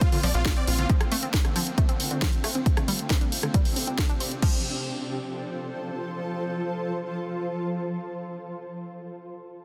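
Uplifting trance at 136 BPM in F major, this soaring excerpt opens with huge detuned supersaw chords, joined at 0.2 seconds by a tight, punchy sequencer bass, both dropping out by 0.9 seconds, while a shimmering, ethereal pad with chorus and sidechain pumping sustains up front over an overdriven punchy kick, a house kit with cracking snare and bright hats, and a round analog pluck arpeggio under a filter sweep with dub echo, the drums and pluck stopping near 4.5 seconds as the pad carries on alone to 8.1 seconds over chords moving from Bbadd9 through Dm7 and Csus2 to F.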